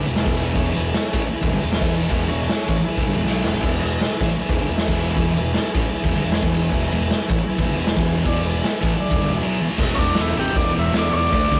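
Garage rock at 156 BPM in E mixolydian, rowdy and swaggering, built on a double-tracked fuzz guitar riff, a bright, overdriven picked bass and an up-front, gritty acoustic drum kit with punchy kick and crash, joined by a jingly tambourine and a reedy, overdriven combo organ holding sustained chords in the background. A drum fill lands at 3.2 seconds, and at 9.9 seconds the sustained organ gives way to a buzzy, clean combo organ melody pushed up front, both organs carrying spring reverb. The rough rehearsal-room sound has saturation and a pumping stone-room ambience, and the clip is cut from a longer piece.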